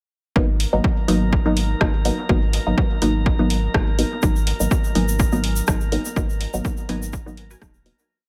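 Drenched in digital ambience, the recording feels cavernous and hypnotic, with its overdriven drums re-recorded in a large room. In this short dub techno piece, a punchy electronic kick sits up front in a steady four-on-the-floor pulse, while an analog drum machine adds programmed hats and rim clicks on the backbeat. Beneath them, a round sine sub bass holds a dotted rhythm with sidechain pumping. A muted sawtooth chord stab also follows a dotted rhythm, moving one shape in parallel and colored by chorus, phaser, sidechain pumping and dub echo. Above, a calm, glassy texture of drifting overtones sustains a single high note with a slow attack and long release. A grainy, bright shaker joins with hand-played sixteenths at 4.2 s, a very quiet, detuned pulse-wave stab adds sparse chords at 5.0 s, and the piece fades out from 5.5 s.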